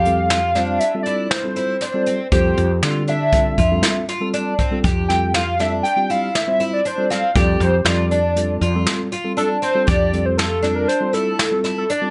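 A nasal, hollow square-wave lead with chorus and vibrato carries the melody up front through this bright, driving excerpt of progressive instrumental band music in 5/4, over a shimmering, octave-doubled fingerpicked twelve-string acoustic guitar with digital delay and audible finger squeak, a mellow tine electric piano, a round, dark fretless bass that drops out at 10.8 s, and an airy brushed jazz kit with a boomy kick, all set in a small room.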